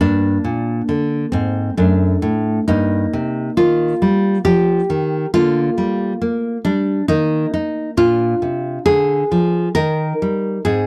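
A dry, close recording with a 1970s studio character and light reverb places a solo nylon-string guitar up front, its fingerpicked tone warm and deep in the classical manner. This solemn, flowing baroque-style dance moves in 3/4 at about 68 BPM with a rubato feel, opening on G minor harmony before settling into E-flat major from 5.3 seconds and closing on an E-flat chord at 9.8 seconds. The guitar spans a range from F#2 to Bb4 in this short fragment cut from a longer piece.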